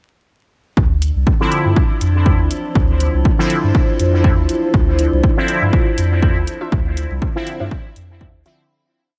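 A punchy, tape-warm electronic kick sits up front from 0.8 seconds, driving a meditative, cavernous dub techno piece in D minor at 121 BPM, with a light 16th-note swing and a four-on-the-floor pulse. Around it, closed electronic hi-hats are re-recorded in a large room alongside the kick, and a deep, round sub bass plays a syncopated riff that pumps against the kick. A juicy, detuned sawtooth polysynth throws sparse, bright chord stabs through a resonant filter sweep, chorus, phaser and dub echo, moving one shape in parallel over a Dm9 harmony. Beneath them, a dark, full-bodied analog pad breathes in with slow-attack sustained chords, while an eerie, metallic FM drone holds a high D in the background, washed in its own reverb. At 5.6 seconds a warbling, lo-fi pluck joins far back with echoing stabs of its own. Vinyl crackle hangs over the whole piece, and a fade-out begins at 6.1 seconds.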